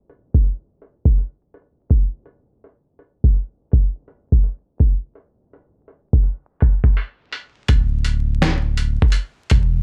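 A dry, gritty recording coated in vinyl crackle and a low-pass filter sets a hazy, melancholic lo-fi hip hop mood, with a filter sweep running through the opening 7.7 seconds of this fragment from a longer piece. A compressed, muffled sampler-style drum kit sits up front from the start, its thumpy kick and fat snare alongside hi-hat and finger snaps in a swung 4/4 that sounds re-recorded in a small room. At 7.7 seconds a deep, full sub bass with an added octave enters up front, its sine-and-triangle tone sustained with a fast attack.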